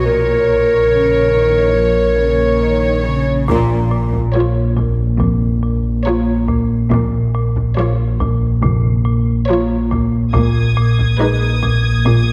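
A straight, steady 4/4 pulse runs under this tense, eerie stretch of cinematic suspense scoring, cut from a longer piece. It opens on intimate, sul tasto bowed strings: a rich violin section carries the melody over a warm cello section, a double bass section sits low in the background, and a deep, ominous drone rumbles beneath them with a nasal, detuned, slow-blooming tone, while a roomy solo clarinet holds an up-front second line until 3.0 s. At 3.5 s the ensemble lands a sudden accent, and a bright, woody marimba struck with hard mallets starts a close, dry riff alongside a very quiet taiko ensemble played with hard sticks, soon joined by a dark viola section in accompaniment. From 10.3 s a second violin section floats in high above, pure and distant, as the harmony shifts away from the opening B-flat minor chord. The whole is bathed in a wet scoring-stage reverb and squeezed into a heavily compressed, radio-like sound.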